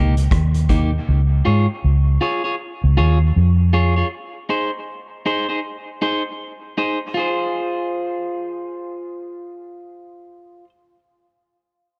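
Meditative and heavy, this short excerpt cut from a longer dub reggae piece sits at 79 BPM in 4/4 with a swung sixteenth-note feel, in F minor. A vintage drum kit, acoustic with a punchy kick and a rolled-off top, offers only a brief figure of hi-hat, kick and rim click between 0.2 and 0.9 seconds, set up front in a small, pumping room. A dark, round, foam-muted fingered electric bass sits prominently in the low register and drops out at 4.0 seconds. An electric guitar at the edge of break-up carries the accompaniment throughout, its picked, compressed tone slightly broken-up and trailed by dub echo. The chords move from Eb to Db and Ab before settling on Fm as a new section begins at 7.2 seconds. Light reverb and small room ambience frame a dark, warm production.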